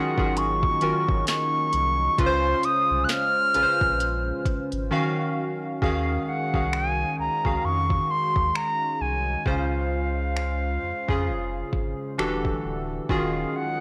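This contemporary R&B excerpt has a longing, moody cast and a swung, unhurried 4/4 feel. A reedy, airy silver concert flute carries the melody up front with a straight, tongued tone and rolled-off highs, trailed by analog delay. Beneath it, detuned analog keys with a square-wave, wave-folded character and a filter sweep play chorused accompaniment. A mellow, smooth pad holds sustained chords in the background, colored by chorus, phaser and a moving notch. A round, warm sine sub bass with transformer saturation anchors the low end, and an electronic kit of soft kick, sharp snare, hi-hat and finger snaps enters at 0.2 seconds, drops out from 4.9 to 5.8 seconds, then returns. The harmony moves among Ebm11, Dbmaj7 and Ebm9, with a brief Em11 near the close, all set in a dry, gritty cassette-tape sound with light reverb.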